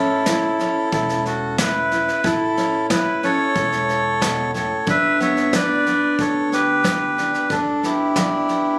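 A reedy, breathy melodica carries the melody up front over bright, full-bodied picked steel-string acoustic guitar and a woody, thumpy pizzicato upright bass sitting in the background, with a soft brushed drum kit joining at 0.3 s, in this heartfelt, down-home honky-tonk and classic country fragment cut from a longer piece, moving in straight 4/4 from an A chord to G at 4.9 s, captured on a phone in the room with club reverb and compression.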